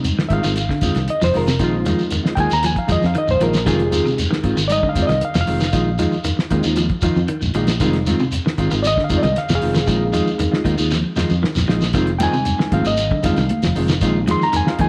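A straight 116 BPM afrobeat groove in F minor rides a cloth-damped, thuddy drum kit with a fat snare and tight kick, while a grainy, distant shekere, round and punchy fingered bass, a clean hollow-body guitar in the background with spring reverb and slapback echo playing arpeggios, and a dark, fingered second guitar playing stabs support an up-front, gritty, overdriven reed electric piano soloing with spring reverb over alternating Fm7 and Bb7sus4 chords, giving this defiant, funky excerpt its edge, with a drum fill at 10.9 seconds and bright, very quiet congas entering at 11.9 seconds.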